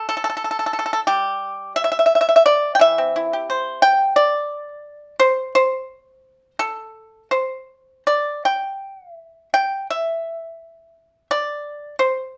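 The recording has a moderate studio reverb and a softened top end, with the highs gently rolled away. This short excerpt of Chinese traditional music, cut from a longer piece, features a solo pipa that carries the whole 12.4 seconds. Played with fingerpicks, the acoustic instrument sounds warm, dry and percussive, sitting up front in the mix. Its lines move freely in rubato within a 4/4 metre, spanning from E3 up to G5. The mood is pastoral and elegant, with a poised, unhurried grace.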